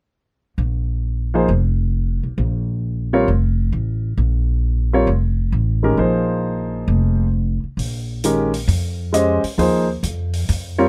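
Modal jazz in Bb dorian at a swung 133 BPM, hypnotic and searching, cut from a longer piece: a woody pizzicato upright bass on steel strings sits up front from 0.6 s over a Bb9sus4 chord, joined at 1.3 s by a warm concert grand piano with deep bass, and a natural-sounding acoustic hi-hat slips in quietly at 7.8 s as the second section begins, all captured close and detailed with little reverb.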